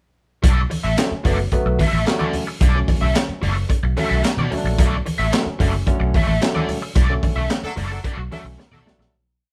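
Driving and cool, this short funk piece rides a gritty, up-front breakbeat kit with handclaps, hi-hat, a punchy kick and a high-tuned snare, a round, foam-muted fingered bass riff anchored on the downbeat with ghost notes, overdriven sixteenth-note guitar scratching through a wah, and thin-skinned congas in the background, while a barky tine electric piano with tube saturation adds rootless chord stabs from 1.0 s and a clear, tightly octave-doubled horn section punches in at 7.6 s as the band accents, the drums fill at 8.6 s and the piece fades out in a live, one-room sound with moderate studio reverb.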